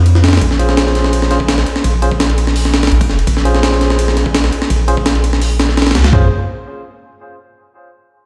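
Heard as if played on a big sound system in a bare stone room with light reverb, this dark, atmospheric drum and bass and jungle excerpt in Bb minor runs at 168 BPM, with a deep, round dub sub bass sitting up front throughout and carrying a filter sweep from 0.4 to 6.1 seconds. A gritty, compressed, sampler-style breakbeat kit with a thumpy kick and high-tuned snare drives the piece from 0.1 seconds, while a barky, clean tine electric piano plays filtered stabs with dub echo through a combo amp from 0.6 seconds over a Bbm9 harmony. A very quiet, silky vintage string machine with phaser and ensemble chorus holds sustained chords only at the opening and again briefly near the close.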